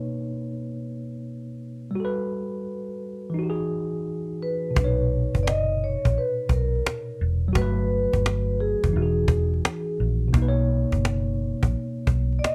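Lo-fi hip hop cut from a longer piece, dreamy and nostalgic with a lazy swing, opening on a worn, slightly out-of-tune tine electric piano playing filtered maj9 chords alone before a ringing vibraphone with soft mallets and slow motor vibrato takes the melody at 4.4 seconds, and at 4.8 seconds a round, foam-muted vintage electric bass and a woody, close, dry cajon with faint snares arrive up front, all in a light reverb.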